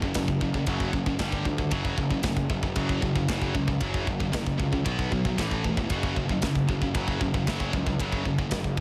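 A straight 4/4 pulse from a tight metal drum kit anchors this short, epic heavy metal fragment cut from a longer piece, with kick drum, snare and ride cymbal sitting up front in a mid-forward, big-room sound with a medium-tuned snare. A double-tracked, high-gain electric guitar plays the riff across the full 8.8 seconds, its bright, picked distortion stacking power chords that move from F#5 to G5 and back, then later through B5 and A5 before returning to F#5. Underneath, a picked electric bass adds a growly fuzz, its overdriven tone both direct and amped, sitting a little below the guitar and drums in level. All three parts play together from start to finish in a single section. The mix is dry and close, giving the heavy, weighty mood an immediate, in-your-face presence.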